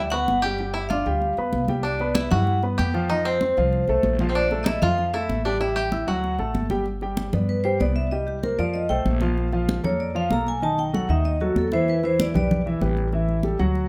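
Afro-Cuban jazz at a brisk 192 BPM in 4/4, sophisticated and sunny in mood, led by a metallic, ringing vibraphone whose melody carries plate reverb and a slow motor vibrato before it moves into a solo at 6.9 s. Up front, an intimate grand piano with audible action noise and long sustain plays the accompaniment, while a woody, thumpy pizzicato upright bass on gut strings anchors the low end and high-tuned, thin-skinned congas add bright percussion. A twangy, fingerpicked bluegrass banjo contributes a percussive second line until 6.5 s, set in a moderate studio room in this short cut from a longer piece.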